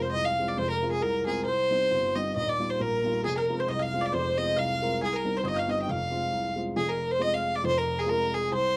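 Wild and spirited, this short excerpt of a Celtic folk polka moves at 136 BPM in 2/4 with a light swing, set in F dorian over chords of Fm, Cm and Ebadd9. A bright, focused fiddle with light vibrato carries the melody up front, while a reedy, round single-reed accordion plays a close, dry second line and a woody, slightly detuned upright piano accompanies with audible action noise. A picked, double-strung bowl-back mandolin joins in the background from 3.2 to 6.5 seconds, and the whole sits in a small room with a dark, warm production.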